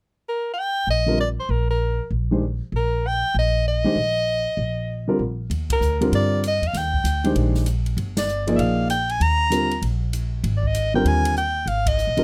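Swung eighths in 4/4 at 195 BPM drive this open, hypnotic modal jazz excerpt in Eb major, where an up-front soprano saxophone carries the melody with warm subtone, light vibrato and scooped notes, a woody, growly pizzicato upright bass enters at 0.9 s, a natural-sounding baby grand piano comps from 1.1 s, and an airy acoustic drum kit with dark cymbals and a boomy kick joins at 5.5 s as the harmony settles on Ebmaj9 before moving to Abmaj9, with band accents punctuating the close, detailed, nearly dry sound.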